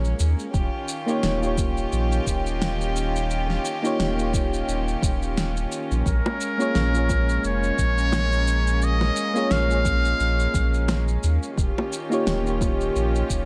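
A short cut from a sunset chillout piece opens with soft, round electric-piano-like synth keys, colored by chorus and digital delay, over floating chamber strings holding sustained chords sul tasto, while a deep sine sub bass sits up front and an electronic shaker and fat snare tick along. An electronic kick drum with a tape-warm, layered punch joins at 0.5 seconds, settling the groove at 87 BPM in 4/4 with a gentle swing on the sixteenths. The harmony rocks between Bbm7 and Eb9, giving the mood a smooth, warm glow. At 6.1 seconds a trumpet with a metal mute takes the melody in a buzzy, breathy jazz style with vibrato, its solo line trailed by tape echo and sitting up front in the mix. Round, low-tuned acoustic bongos enter just after, adding close-miked color until 12.8 seconds. A light reverb gives the whole blend a soft sense of space.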